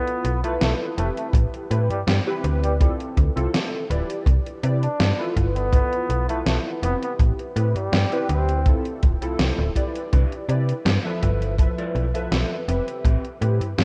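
Vaporwave with a melancholic, hazy mood, this cut from a longer piece opens with a breathy flugelhorn melody, lightly vibrato-laden with scooped notes in a jazz style, until 8.7 seconds, over detuned, warbling lo-fi synth keys colored by analog chorus and tape echo. An up-front, snappy FM bass with a metallic attack and a punchy acoustic kick join an overdriven, gated 80s digital drum machine, whose hi-hat and snare carry gated reverb. A dark, clean electric guitar riff sits in the background from 10.1 seconds, and the rough home-demo mix has a cassette-tape character with light reverb as the chords cycle through G13, Am9, Dm7 and Cmaj9.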